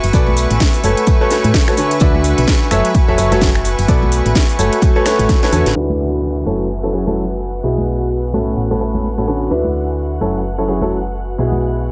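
Piano house at 128 BPM with a swung sixteenth-note feel, euphoric and uplifting, cut from a longer piece. A clear, up-front baby grand piano carries the riff over chords moving through B7sus4, A69, D69 and F#m7, with digital delay and sidechain pumping, while a punchy, round FM bass sits dark and up front beneath it. A tape-warm analog kick punches from 0.1 s until 5.4 s alongside an overdriven house kit with a cracking snare, metallic hats, cabasa and finger snaps, a very quiet street-band kit with hi-hat, shaker and snare, and hard-handed tambourine and congas in the background. Behind the piano, a smooth symphonic string section holds sustained chords with light vibrato, and an airy, breathy pad with chorus fills out the texture, both pumping with the sidechain. A drum fill and band accent lead into the second half at 5.8 s, where a filter sweep runs to the end and a very quiet downlifter passes through. 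The mix has light reverb and a small-room ambience under a low-pass filter.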